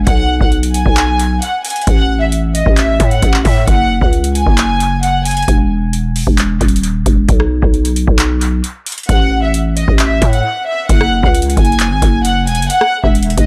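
Dark, hard-hitting half-time trap in F# dorian at 133 BPM, cut from a longer piece, built on a growling, buzzy 808-style bass and a booming analog drum machine with a deep kick, metallic hats, handclaps and rim clicks, both sitting up front. A floating, pure violin section with a smooth top carries the melody, dropping out at 5.4 seconds and returning at 9.1 seconds, while dub echo trails the strings and drums. The echo-heavy mix sits in a digital ambience, with a brief break at 10.4 seconds before the closing section.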